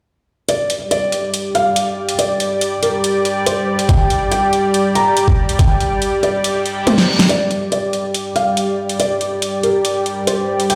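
Heavy wobble dubstep with a menacing, half-time feel, where a boxy, thick-felt upright piano carries a dark, mellow melody through a low-pass filter and digital delay over a bright, detuned supersaw pad pumping under sidechain and a filter sweep, while a tape-warm drum kit with a huge snare, metallic hats and toms drives the track, joined at 3.9 s by an up-front knocking kick, with a background reverse cymbal at 6.6 s and a drum fill leading into a build-up at 7.3 s, where the piano gets its own filter sweep, all in a lush hall reverb.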